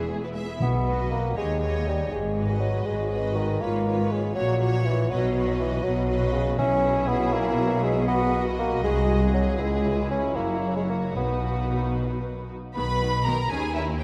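The warm bassoon sits up front with a light vibrato, carrying an accompaniment line from 0.6 s to 12.0 s above rich, lush cello and double bass sections, while a smooth, even symphonic violin section sings the melody from 0.9 s and a focused studio violin section adds a second line over a background viola section bending with portamento. This cheerful, spirited classical passage in B major moves in a rubato 6/8 at 80 BPM, with very quiet timpani struck by hard mallets at 0.6 s and 6.6 s. Everything rings in a vast, echoing cathedral reverb, and the clip is cut from a longer piece.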